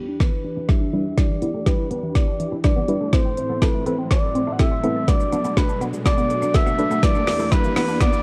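A dry, worn cassette-tape sound with warbly pitch drift colours this energetic, confident dance-pop build-up in E minor at 123 BPM, cut from a longer piece, moving through Em7, Amadd9 and Bm7 before returning to Em7. A bright alto saxophone with vibrato carries the melody through a low-pass filter and delay over up-front deep house drums with a deep kick, woody snare, smooth hats and shaker, playing a fill that spans the whole passage. Underneath sit a soft, round pumping pluck, mellow organ-like ensemble strings, glassy crystalline wavetable arpeggios, a clean chorused twelve-string electric guitar riff and a filter sweep, with a background riser entering at 2.0 s.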